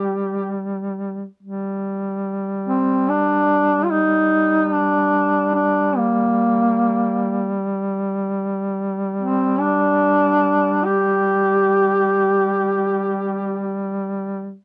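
A dry, close recording in a 1970s studio style, with light reverb, carries this mournful, solemn excerpt of a Caucasian folk lament in G minor. It moves in free time, with two duduks sharing the space. The melody duduk has a warm, roomy tone that seems distant yet sits up front, and its vibrato and scooped notes range from Bb3 to G4 in a folk style. Beneath it, a second duduk sustains a vintage-toned drone on G3 at a lower level, also shaded with vibrato and scooped notes. The melody falls silent at 13.8 seconds, leaving the drone to sound alone until 14.6 seconds.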